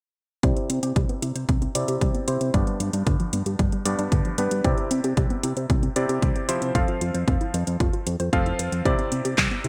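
This excerpt of romantic, danceable Italo disco opens at 0.4 s with the full band together in C major, moving at 114 BPM in a straight 4/4 through a loop of Cadd9, G, Cadd9, F and back to Cadd9. An up-front electric grand piano plays short stabs with a clangy low end and vintage directness, dulled by a low-pass filter and a digital delay, with a filter sweep running across the whole passage. Beneath it, a fat analog bass built from detuned, saturated sawtooth and square waves holds a thick, nasal, evolving line with its own filter sweep. In the background, an analog pluck runs bright, round arpeggios from D3 to F5, colored by ring modulation, a noise layer, chorus and digital delay. A punchy, tape-warm electronic kick sits up front through 9.5 s, joined by a house kit of handclaps and metallic hi-hats in a small room, all framed by light reverb and a polished 1980s-style digital sheen.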